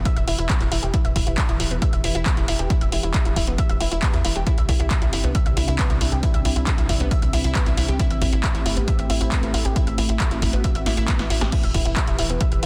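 A straight 4/4 pulse drives this euphoric uplifting trance excerpt. A punchy analog electronic kick sits under a drum machine of handclaps, snare, hi-hat and crash cymbal, both re-recorded in a large room, with sidechain pumping on the hats and cymbals. A tight sawtooth-and-square sequencer bass with a fast attack and decaying filter pluck pushes the groove with sidechain pumping. Above it, a round, detuned analog pluck plays arpeggios through chorus and tape echo, its bright filter sweep and noise layer giving it sparkle. A lush, thick unison pad holds sustained chords with a slow attack and long release, moving through Em, Csus2 and Am7 before returning to Em at 11.5 seconds, just after a drum fill from 10.9 seconds. The dry, dense, heavily limited master keeps the whole track upfront and relentless.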